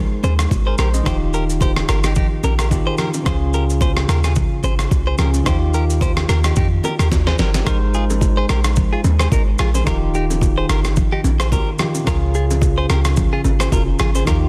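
A dense, heavily limited mix with light digital ambience carries this sunny, joyful afrobeats excerpt, where a gritty, overdriven sampler-style drum kit with a thumpy kick and fat snare sits up front over a deep, boomy 808-style bass, while a barky, bell-like tine electric piano comps through Abadd9, Ebadd9 and Db chords, a twangy, picked clean guitar riff trails tape echo, bongos and congas sit in the background, and a drum fill at 7.1 seconds leads into the second section.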